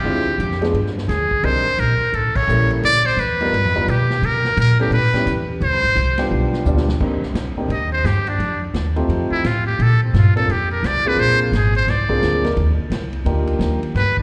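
Heard as a live gig through a venue's PA with recital-hall reverb, this cool, swinging small-group jazz cut features a buzzy, thin muted trumpet up front over a woody, thumpy pizzicato upright bass, a concert grand with deep bass and long sustain, and a vintage kit with dark cymbals and a tight kick, all but the bass touched by slapback echo, with a band accent at 2.3 seconds and a drum fill leading into the muted trumpet solo at 7.0 seconds.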